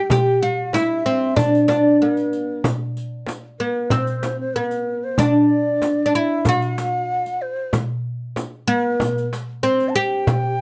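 A straight 4/4 pulse at 94 BPM carries this stately, warm excerpt of Arabic maqam ensemble music in G maqam rast, where an up-front, woody, plectrum-plucked fretless oud with double strings leads the melody, a breathy, reedy ney with vibrato traces a second line above it, and a crisp metal-shell darbuka, a small frame drum heard in a small room and a softer riq with dark, vintage-sounding jingles keep time, all captured dry and close in detail.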